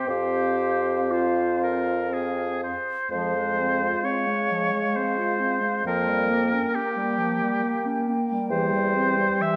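A hollow, close-miked silver flute sings the melody from the first moment, with a clear oboe carrying a vibrato-tinged second line up front while a distant clarinet, a warm French horn and a mellow bassoon bass accompany in a roomy scoring-stage reverb, giving this slow, rubato classical wind-quintet movement in 3/4 a melancholic, solemn cast until the bassoon stops at 9.3 s, just before the excerpt ends.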